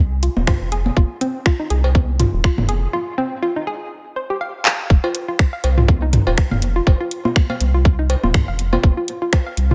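Light reverb and a digital ambience frame this clinical, sparse minimal techno piece, cut from a longer track, at 122 BPM in F minor, with a swung 16th feel in 4/4. Up front, a rubbery, dark square bass pumps against the sidechain beside a tight electronic kick and a garage kit of finger snaps, handclaps and metallic hats, while electronic congas, toms and cowbell, re-recorded in a large room, carry analog delay. A hollow, detuned square pluck riff carries chorus, pumping and diffuse ambient delay through a filter sweep on the arpeggio, a break begins at 2.9 seconds, a drum fill hits at 4.7 seconds, and the drop lands at 4.9 seconds as the harmony shifts from F minor to an F power chord.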